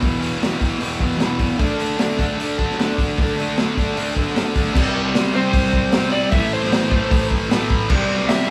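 A straight 4/4 garage rock groove at 152 BPM drives this gritty, raw fragment of a longer piece, as a crunchy, saturated breakbeat kit with a punchy kick, high-tuned snare and dark cymbals sits up front beside a thick, bright, double-tracked fuzz guitar riff, and an overdriven slide guitar enters at 5.4 s with a melody, the band captured playing live in one room with light reverb.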